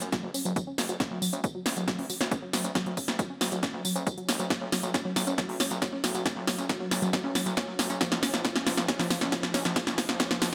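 A straight 4/4 pulse at 137 BPM drives this euphoric, soaring uplifting trance excerpt, built as a build-up with a drum fill running throughout: a big-room dance kit, re-recorded in a large room and sitting up front with a punchy snare, crisp sidechain-pumped hats and tambourine, is joined by a tape-warm analog kick that enters at 0.1 seconds. Underneath, a gritty, aggressive synth bass with a saturated, oscillator-synced tone and a moving notch pumps with the sidechain, while a lush, detuned unison pluck plays delayed arpeggios under a filter sweep. The harmony moves through F#5, D, B5 and C#, all bathed in a moderate lush hall reverb.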